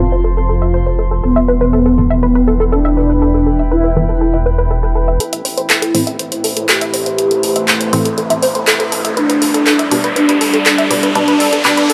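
Hypnotic and dramatic, this melodic techno excerpt moves at 121 BPM in a straight 4/4 in A minor, drifting from F and Em into Am and G. A smooth, expressive sawtooth lead with soft attack, vibrato and portamento carries the melody over a deep, moody pad of slow-swelling sustained chords, while a tight, driving arpeggio sequence with a mellow pluck and phaser pulses above. A muted, nasal dub chord stab bathed in phaser and tape echo sits in the lower register, and a rumbling, detuned, saturated saw bass anchors everything from up front. Filter sweeps shape the lead, the stab and later the arpeggio, and at 5.2 seconds a punchy analog drum machine with handclaps and hi-hats enters as the music starts to build. An electronic riser joins at 6.5 seconds, pushing the build-up forward within a moderate, lush hall reverb.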